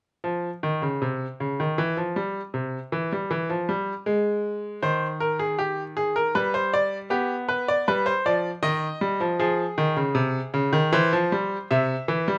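Classical baroque-style two-part invention for solo grand piano, solemn and serious in a measured 79 BPM triple metre, its bright, polished, up-front tone with short sustain ranging from C3 to E5 in light reverb, opening unharmonized before moving through Cm/Eb, G, G7/B, Ebadd9 and Fm to settle on C by 11.7 seconds in this brief cut from a longer piece.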